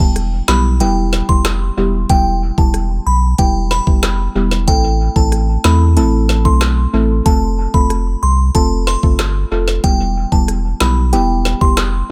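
From the first beat, a sultry, tough dancehall groove sets a knocking kick, woody snare, smooth hi-hats, rim clicks and handclaps with dub echo up front beside a deep, round sine sub bass, while a soft, dark, wave-folded pluck with chorus comps and a glassy FM synth bell carries the high melody through chorus, phaser and dub echo over an Em, Am, F, Em progression in a dry, echo-heavy mix cut from a longer piece.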